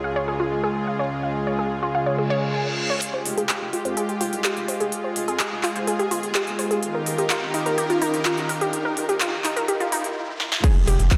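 Progressive house at 126 BPM in F minor, driving and bittersweet, this excerpt opens on a lush, detuned supersaw pad holding sustained chords and a wave-folded unison pluck spinning arpeggios through digital delay, both pumping with sidechain as filter sweeps move across them over a Db chord. A reverse cymbal arrives at 2.2 seconds, and at 3.0 seconds a punchy big-room drum kit with crisp hats and handclaps kicks off a build-up, joined by a deep, saturated sine sub bass that moves between Fmadd9 and Ebadd9. After a brief stop and a drum fill, a punchy, tape-toned electronic kick lands with a background impact at 10.6 seconds, all set in a dark production with a lush hall reverb.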